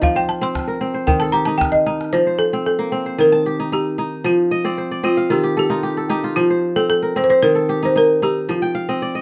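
Set in a straight 4/4 pulse, this hypnotic fragment of West African string and xylophone music is led by a woody, round balafon struck with hard rubber mallets, its dry, dark and smooth melody sitting over the ringing, crisp fingerpicked arpeggios of an up-front acoustic kora. A deep calabash with a live-room sound adds percussion at the opening and closes its part with a fill ending at 2.1 seconds, after which the kora adds fills from 4.5 seconds. Moderate studio reverb gives the recording a sense of space.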